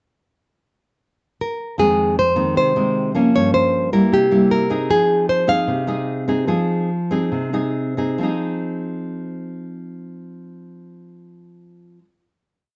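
A fingerpicked nylon-string guitar opens this short, intimate bossa nova piece at 1.4 s with a classical, motif-based melody of song-like phrases. A second nylon-string guitar joins at 1.8 s with thumb bass and syncopated plucked chords, and the pair slows down from 4.9 s before the accompaniment lets a final chord ring until 12.0 s. The production is dark and smooth, with both guitars up front in a moderate studio reverb and a gentle warmth to the acoustic tone.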